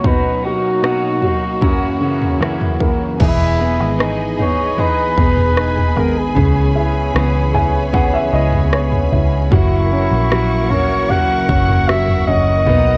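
A distant, roomy flugelhorn carries the melody with scooped notes through this emotional, heartfelt pop ballad fragment, backed by a woody upright piano that adds a fill between 7.2 and 9.5 seconds, lush bowed strings with rich vibrato, and a bright, compressed clean electric guitar picking arpeggios through harmonic tremolo and tape echo. A punchy, layered electronic-sounding drum kit of kick, rim click, toms and crash cymbal plays throughout, and a dark, round, foam-muted electric bass joins at 3.2 seconds as the chords move from Emaj7 toward F#7. The horn, piano, strings, guitar and drums carry a home-cassette character, with plate reverb on the horn, strings and guitar, all set in a modest small room.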